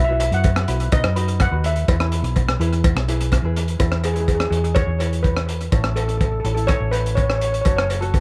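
A shimmering lead steel pan, struck with hard rubber sticks and trailed by tape echo, carries the melody of this carefree, festive calypso fragment, taking a solo from 3.8 s as the chords move through E6, A and F#m. Beneath it, a light, thumb-plucked tenor ukulele with its own tape echo provides accompaniment, while a round, amped hollow-body electric bass and a gritty, saturated breakbeat kit with a punchy kick, hi-hat and rim click sit up front, the drums entering at 0.2 s. A cowbell joins in the background at 0.4 s, and the echo-heavy mix has light reverb and a small-room ambience.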